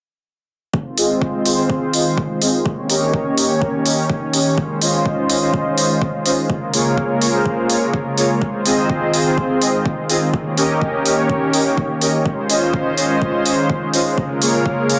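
A dense, heavily limited modern master with moderate digital room reverb frames this emotional, expansive progressive house excerpt in F minor at 125 BPM, cycling through Fm7, Eb7, Dbmaj9 and Bbm7. From 0.7 seconds a lush, thick, bright pad of detuned sawtooth and square waves holds sustained chords with chorus and sidechain pumping, over a deep, tape-tinged electronic kick re-recorded in a small room. At 1.0 seconds smooth, layered hi-hats join, pumping with the sidechain, along with soft detuned supersaw stabs that carry tape echo and a low-pass filter sweep that runs to the end.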